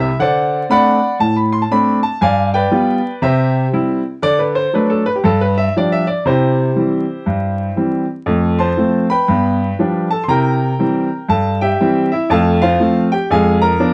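A bright baby grand piano carries this short excerpt of playful, exuberant stride jazz alone, its brilliant, open tone ringing with long sustain and sitting up front across a range from F2 to C6. The swung 4/4 groove moves through dominant and major chords before the harmony shifts to F major at 8.3 seconds, closing on a diminished chord at 13.3 seconds. Moderate studio reverb and a dark production with vinyl crackle give the recording a vintage, aged character.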